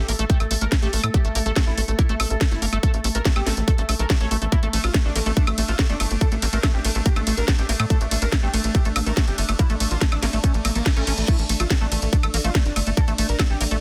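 Psychedelic trance at 142 BPM in a straight 4/4, intense and trippy, with an up-front tight kick and a layered electronic drum kit of cracking snare, bright hats, crash, ride and woodblock, both re-recorded in a small room, driving a punchy, saturated sequencer bass whose wave-folded sawtooth pluck carries a moving notch. A thick, detuned unison lead with vibrato sings the melody through phaser and tape echo, while a squelchy, resonant acid bass riff with 12-bit sampler grit and a chorused drone of sweeping overtones sit in the background, all three pumping with sidechain over a rootless Gsus2. A reverse cymbal rises from 10.6 to 11.3 seconds in this dry, dense and heavily limited modern mix, cut from a longer piece.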